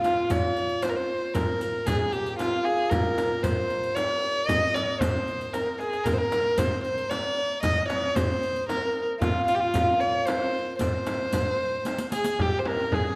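Persian modal ensemble music in dastgah shur on C, moving at 114 BPM in a straight 3/4 with a longing, hypnotic mood, in a short excerpt cut from a longer piece. A single bowed violin carries the melody up front, its dark, woody, boxy tone touched with light vibrato, while a hammered santur plays a second line in the same register, its shimmering, ringing sound adding warmth beneath. The percussion sits behind them: a tight tombak played with hard hands, close and dry in the background, a riq with dark jingles likewise tucked back, and a small, bright frame drum heard from a distance in a large room. Drum fills break in at 5.5 seconds and again at 11.9 seconds, and the riq drops out at 12.4 seconds just before the others finish around 13 seconds. The whole performance is set in a wet recital hall reverb with a decay of about 1.5 seconds.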